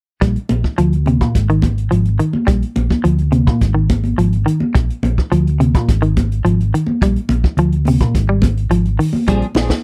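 A straight, driving afrobeat groove in four sits on a compact cocktail drum kit, its punchy kick and high-tuned snare set in a tight booth with hi-hat, and congas join at 0.5 seconds with hard hands on thin, vintage-sounding skins that come across bright and band-limited. Up front, a hollow-body short-scale electric bass played with the fingers lays down a dark, round, amped low line. A clean, picked electric guitar spins hypnotic arpeggios in its lower register, also close in the mix, over a repeating alternation between Bbadd9 and Ab5. At 9.3 seconds a second clean guitar adds brief warm stabs treated with ensemble chorus, landing on a closing Bb9 chord. The sound is dry and close, with little reverb, in this short cut from a longer piece.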